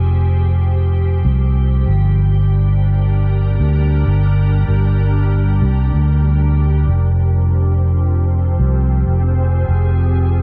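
Meditative and deep, this ambient dub fragment moves at 96 BPM in F dorian, cut from a longer piece, with a soft organ-like pad holding pure, sine-toned chords through ensemble chorus and its own reverb, shifting from Fm to Gm at 1.9 seconds and back to Fm at 6.9 seconds. Up front, a fingered electric bass plays low and growly throughout, its amped tone far louder than the calm pad. The production is dark and dry.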